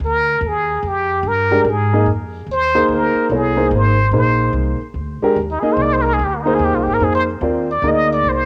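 Searching and hypnotic, this short excerpt of modal jazz swings in 3/4 at 146 BPM, with a woody pizzicato upright bass sounding from the start and a plunger-muted trumpet taking a clear, wah-wah solo with light vibrato from 0.1 seconds. A dark, mellow grand piano, its action noise audible, joins at 1.5 seconds as the harmony moves from Fm9 to Ab and on to Fm7. The trumpet and piano carry a cassette-tape character, and a moderate spring reverb gives the intimate home recording its room.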